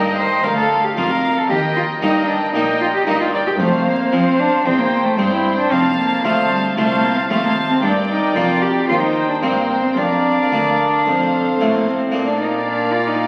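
A nasal, up-front solo cello carries the melody from the first moment of this festive, lively baroque-style concerto excerpt in Bb major at 113 BPM, alongside a section of gut-string violins on the upper melody, a rich second violin line, a dark, background viola section and a round, airy Italian-style harpsichord filling out the accompaniment, while a shadowy cello section and a very quiet double bass section, which drops out at 12.1 s, anchor the bass, all set in a lush concert-hall reverb and heard through the crackle of a very old 78 rpm record.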